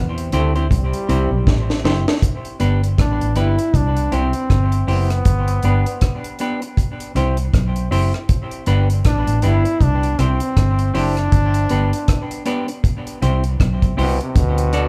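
Uplifting and sunny, this roots reggae excerpt in G major at 79 BPM with a swung 16th feel has a bright, punchy trombone taking a smooth, lightly vibratoed solo from 2.2 seconds over a dry, dark drum kit with a high-tuned snare and tight kick that rolls a fill in just before, a round, foam-muted electric bass with tube saturation, a very quiet compressed electric guitar riff, and a clean hollow-body guitar with tape echo, all captured with light reverb as a band playing live in one room while the chords move between C and G before landing on D.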